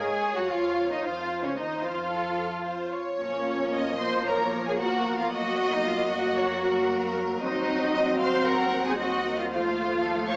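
Through a small-speaker sound with a moderate scoring-stage reverb, this stormy, dramatic excerpt of a fast romantic orchestral movement in Bb minor moves at 114 BPM in 4/4 with a rubato feel. Lush violin sections sing the melody and a second line with vibrato, a distant viola section fills in the accompaniment, and an up-front cello section joins a dark, woody double bass section on the bass. Mellow, punchy French horns hold sustained chords as the harmony passes from Bbm through F7, Gb and Cdim/Eb.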